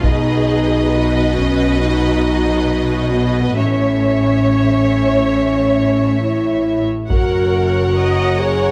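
Cinematic, epic orchestral film score in a steady 4/4, this short cut from a longer piece feels adventurous and majestic. A lush violin section carries the melody with smooth, even vibrato, while a second violin section plays a clear, focused line just beneath it. The violas add expressive accompaniment with soft attacks and portamento, and the cellos and double basses anchor the bottom with rich, bowed tone. Holding everything together, the mellow French horn section sustains tight chords that stand out prominently in the mix. Taiko drums struck with hard sticks sound close and dry, appearing only at the opening and again from 7.1 seconds, as the harmony moves from Cb to A and then to Gb inside a moderate scoring-stage reverb.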